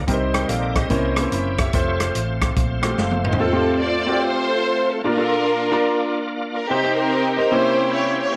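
A bright, lightly overdriven tonewheel organ holds sustained chords through slow rotary speaker and chorus vibrato, joined by a clear, woody upright piano, a round, dark hollow-body electric bass and a punchy swinging big-band drum kit in a reverent, hopeful uptempo gospel swing at 145 BPM, until a drum fill at 3.0 seconds closes out the bass and drums and the intimate, soft-attack bowed string section takes up the melody from 3.4 seconds, the whole small room glistening with wet spring reverb.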